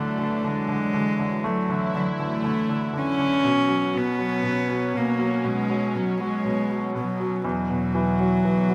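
From the first moment, a reedy, gut-string bowed cello sings a tender, emotional pop melody up front, over brilliant concert grand piano accompaniment with deep bass and a thick, warbling, detuned sawtooth pad holding sustained chords through chorus, in a rough home-demo mix with moderate studio reverb, moving from Dadd9 to Bsus2 at 3.4 seconds and Esus2 at 7.4 seconds in this short clip cut from a longer piece.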